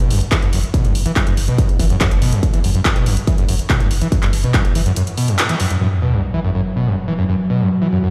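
A straight 4/4 pulse at 142 BPM drives this intense, peak-time techno excerpt, built over an F#sus4 chord. Up front, a screaming, squelchy sawtooth acid riff carries distortion, subtle chorus, tape echo and sidechain pumping, its resonant filter sweep giving each fast-attack note an aggressive bite. Beneath it sits a round, deep sine sub bass on F#1 with overdrive, while a distorted, layered electronic kick and a punchy, tape-tinged analog drum machine of handclaps and hi-hats hold the groove, the hats pumping under the sidechain. The drum machine stops at 5.8 seconds as an electronic sub drop lands, and at 6.3 seconds an evolving sawtooth and pulse-wave drone on F#3 fades in slowly, shimmering through chorus and phaser. A lush hall reverb and the boom of a big sound system in a bare stone room lend the recording a raw, cavernous feel.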